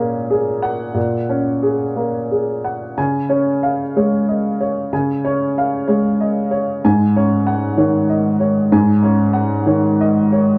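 A clear, woody upright piano, slightly detuned and placed up front, plays alone throughout this 10.6-second fragment of tender, hopeful neoclassical minimalism, spanning low to high register in a freely rubato 6/8, with light reverb and a dark production.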